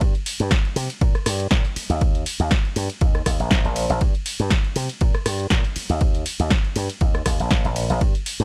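Filtered disco house at 120 BPM in 4/4, with a light sixteenth-note swing that gives this short cut from a longer piece a sensual, funky sway. An electronic kick drum sits up front with an analog punch, running from the start to 8.1 seconds. A punchy analog drum machine fills out the groove with hi-hat, ride cymbal, rim click and snare, its snare snapping forward and its cymbals and hats pumping under sidechain compression. Underneath, a bright, direct slap bass through an envelope filter moves between Bb1 and C3, pumping under sidechain compression through the whole 8.4 seconds. The sound is dry and gritty, with little reverb, like a hardware recording pressed close to the listener.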